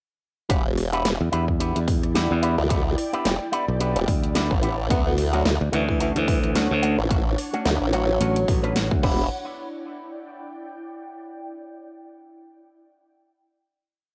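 A tape-warm home cassette recording with light digital ambience carries this gritty, swaggering glitch hop piece at 109 BPM in E dorian, where a punchy electronic kick and a dubstep kit with a huge snare and metallic hats drive a swung beat with edits. Up front, a saturated formant-sweep wobble bass plays modulated phrases with changing wobble speed while a bright, growly fingered electric bass answers with chopped phrases. An envelope-filtered electric guitar adds twangy chord stabs with tape echo, and an ethereal phased pad drifts in the background from 1.8 s. A breathy tenor saxophone slips in short, intimate jazz answers with vibrato from 4.9 s over a move from Em7 to Dmaj7, before the pad holds a final note alone until 11.5 s.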